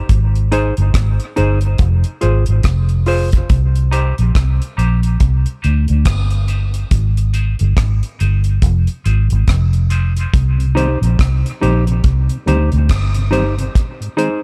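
Hypnotic and meditative, this dub reggae excerpt moves at 70 BPM in C minor with a swung sixteenth feel, built on a dark, round, foam-muted fingered electric bass and a dry, up-front reggae drum kit of tight kick, hi-hat and rim click, while a clean, fingered electric guitar with tremolo and dub echo joins at 0.5 s and a soft, flute-like tonewheel organ with chorus vibrato and slow rotary speaker drifts in behind at 3.8 s, all cycling through Ab, Fm and Cm in a dry, echo-heavy mix that opens with a break and carries a long filter sweep.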